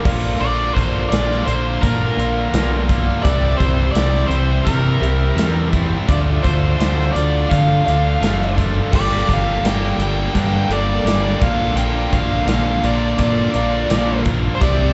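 Classic rock with a swaggering, gritty attitude, this short passage from a longer piece moves in a straight 4/4 over a chord cycle that runs from Bb through C, Dmadd9 and Gmadd9 before returning to Bb. It sounds like a live gig heard through the venue's PA, with club reverb and a dulled top end. The growling fingered bass sits up front, dark, round and punchy with overdrive, alongside a gated 80s kit with a punchy kick, medium-tuned snare, bright cymbals, hi-hat, crash and tambourine in an airy, polished big room. The melody comes from a nasal lead guitar with a parked wah, overdriven and carrying slapback echo, entering at 0.4 seconds. Behind it a crunchy overdriven guitar with slapback and a very quiet overdriven electric guitar play riffs, joined at 8.9 seconds by a tight, double-tracked distorted guitar. Filling out the background are a very quiet tonewheel organ holding lightly overdriven chords through a slow rotary speaker, and a very quiet honky-tonk upright piano, detuned, jangly and woody.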